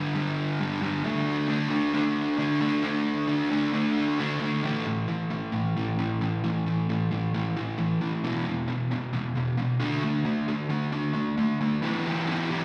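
Angsty and dark, this cut-out fragment of straight 4/4 rock at 134 BPM features a lone fuzz guitar, warm, picked and double-tracked, sitting up front with distortion, slapback echo and digital delay as it drives power chords from G5 through D5, A5 and E5 before landing on E minor at 11.8 seconds, all heard through a live venue's PA in a moderate club room.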